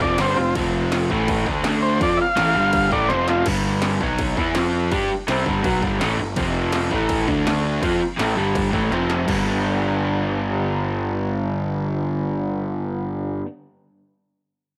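A swaggering, raw garage rock excerpt opens with a buzzy, overdriven combo organ taking a solo with heavy vibrato and tape echo, over a double-tracked garage guitar riff, fuzzy round bass and a distorted industrial drum kit with a clanging snare. The organ falls silent at 3.5 seconds, after a drum fill, leaving the up-front picked guitar and overdriven bass to drive the riff while the drums keep going until a second fill ends their part at 9.4 seconds. Guitar and bass carry on alone to the close, set in light digital ambience.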